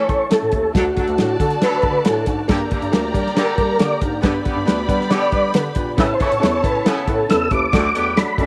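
Joyful, danceable uptempo 1960s-style soul in which a soft, flute-like tonewheel organ carries the melody through fast rotary speaker and chorus vibrato, over a lightly overdriven organ holding chords, a distant horn section on a second line from the start, muted, veiled strings joining on another second line from 0.7 s, a boxy upright piano in the background, a dark bass clarinet with scooped notes on bass, and a dry, up-front soul drum kit of hi-hat, tight kick and snare, all set in moderate spring reverb in this excerpt.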